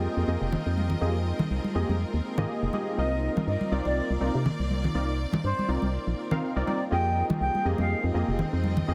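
A dense, heavily limited modern master with light reverb gives this short deep house excerpt a deep, warm mood and a gently swung groove. A hollow, organ-like FM bass with a fast, decaying attack sits dark and up front, while round, detuned analog keys play mellow stabs, colored by chorus, a filter sweep and analog delay. Behind them a moody ambient pad holds sustained chords with a slow attack and long release, washed in chorus and its own reverb, and a bright, lush string section adds bowed texture with vibrato. Congas with a thin, damped skin and a small-room sound enter at 0.5 seconds. At 3.0 seconds a distant, airy silver concert flute plays a straight-toned melody with a crisp attack and tape echo, stopping at 8.0 seconds as the harmony moves from Fm11 to Cm11 and back.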